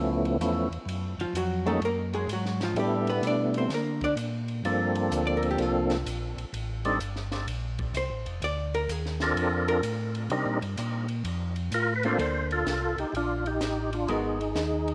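A swinging 4/4 groove at 127 BPM, with a triplet swing on the eighth notes, drives this greasy soul jazz organ trio in Bb major, cut from a longer piece. A compact cocktail drum kit comes in at 0.3 s, sounding acoustic and dry, with dark cymbals across hi-hat and ride, a high-tuned snare and a punchy kick. Beneath it, a mellow tonewheel organ carries the bass line, round and clean with key click and a slow rotary speaker, sitting up front in the mix. A second tonewheel organ plays the melody with a fat, lightly overdriven, percussive tone, colored by second harmonic percussion, chorus vibrato, slow rotary and tape echo. An amplified archtop guitar enters at 1.2 s with a picked, compressed hollow-body sound, and a guitar solo runs until the shift to a new section at 12.2 s. A moderate echo chamber reverb gives the trio a roomy sheen, while the chords move through altered dominants and rich ninth and eleventh voicings.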